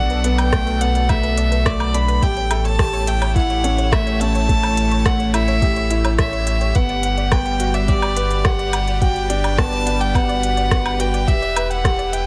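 Hypnotic and moving, this piano and strings electronica moves in a straight 4/4 through a short passage cut from a longer piece, with the harmony drifting from Bm7 through A7 and Gmaj7 to Em7. A dark, earthy solo violin carries the melody up front, bowed with light vibrato and a smooth top, its line trailed by delay. Beneath it, a woody upright piano plays a present, polished riff with long sustain and its own delay, while a round sine sub bass sits deep and mellow, breathing with sidechain pumping. A lush, thick sawtooth pad holds sustained chords in the background, bright and detuned with chorus, phaser and sidechain pumping, and a very quiet, punchy unison pluck threads arpeggios through the mix. The electronic drums, re-recorded in a small room, pair a soft kick entering at 0.5 seconds with crisp hi-hats, rim clicks and woodblock, all set in a light reverb.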